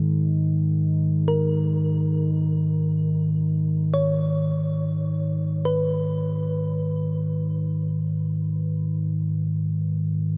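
A deep, rumbling drone opens this haunting, unmetered world meditation piece, sitting up front with a slow attack, long release and its own reverb that gives it an ominous weight. At 1.3 seconds a quieter thumb-piano-like synth pluck joins as texture, its round, tine-like tones colored by chorus and a noise layer as each note decays. The two parts hang in a vast, echoing space, and the fragment, cut from a longer piece, stays dark and meditative throughout.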